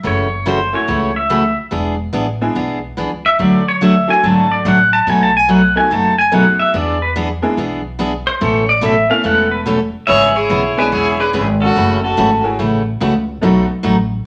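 Playful and cheerful, this swung country piece at 144 BPM opens with a twangy, up-front pedal steel guitar solo, played with fingerpicks, slide and volume swells, over a full-bodied picked dreadnought acoustic guitar, a woody pizzicato upright bass and a jangly vintage tack piano, before a clear bowed fiddle with light vibrato adds a second line at 10.1 s, the whole sitting in a wet studio reverb.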